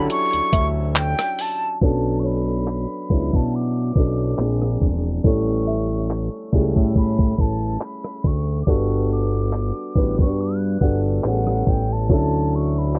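A crisp, sampler-style 8-bit drum machine sits up front from 0.1 seconds, with a thumpy kick, handclaps, hi-hat, rim clicks and a crash cymbal carrying a tape-like glow. This is a moody, sensual contemporary R&B cut at 70 BPM in 4/4, in B minor, with a light 16th-note swing. A fat, thick analog bass blends sawtooth and square tones with a detuned, sustained weight and a fast attack, sitting just as close as a concert grand piano that supplies warm, deep-bodied chords moving from Dmaj9 through Bm9, A7 and Gmaj9. Above them a breathy silver concert flute carries the melody high in its range, its metallic tone shaped by vibrato and a crisp attack. In the background, a soft, round pluck with chorus and delay adds a dark, decaying, wave-folded shimmer before dropping out at 11.6 seconds. The mix is dry, with little reverb and a low-pass filter rounding off the top, in this excerpt from a longer piece.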